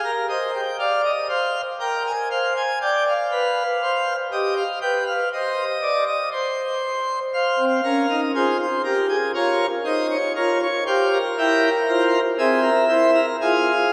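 Driving yet contemplative, this classical passage cut from a longer baroque-style four-part fugue moves at a steady 60 BPM in 4/4, with the pipe organ playing alone from 0.0 to 13.9 seconds. The plenum registration, with its mixtures and romantic voicing, sounds full and brilliant, ranging from C4 to Ab5 and sitting up front. The harmony travels from C minor through Dm7b5 and G7/B to end on F minor, all set in a wet cathedral reverb that hangs for 4.8 seconds and places the listener further back in the room.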